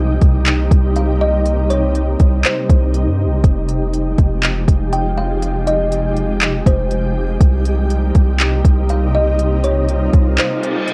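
A hazy, tape-worn sound with light reverb frames this short excerpt of atmospheric cloud-rap, a melancholic hip hop piece at 121 BPM in 4/4 with a half-time feel, drifting from Cm7 to Fm9 and back. A shimmering, detuned ambient pad holds sustained chords throughout, its slow attack and long release softened by chorus and built-in reverb while sidechain pumping gives it a gentle breath. Underneath, a deep, mellow 808-style bass sits up front with long sustained notes, and a very quiet, breathy wind-like noise texture hovers in the background. The overdriven electronic drum kit, with soft kick, crisp hi-hats and handclaps, comes in at 0.2 seconds and sits prominently in the mix, joined at 1.0 seconds by a woody, hollow-toned kalimba melody whose short plucks carry a vintage, band-limited character and a tape echo. As the bass drops out for a brief break at 10.4 seconds, a reverse cymbal enters up front at 10.5 seconds to close the clip.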